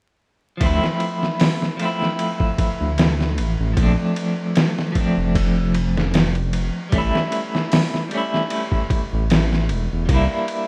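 A rough home-demo mix with vinyl crackle and light reverb frames this brooding, smoky trip hop excerpt, its swung groove running from 0.6 to 10.7 seconds over a Dm7, Bbmaj7, A7 and C7 progression. Up front, a pitched-down, muffled sampler-style kit with a thumpy kick, medium-tuned snare, hi-hat and ride carries overdrive and 12-bit sampler grit, while a deep, rumbling detuned saw bass beats darkly beneath it. A clean, picked electric guitar adds warm accompaniment, coloured by tremolo and tape echo.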